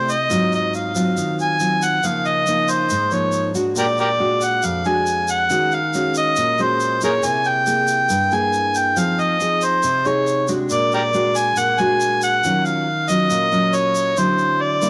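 Sophisticated and sunny, this bossa nova excerpt puts an amplified, overdriven harmonica up front, playing a gritty jazz-style solo melody with light vibrato, a soft attack, scooped notes and tongue slaps. Beside it, a full-bodied nylon-string guitar, fingerpicked in a deep classical manner, carries rich chords such as Db69, Ebm11 and Bbaug7, while a grainy, bright egg shaker with a vintage, band-limited tone enters at 0.1 seconds. A moderate echo chamber reverb gives the recording a roomy glow.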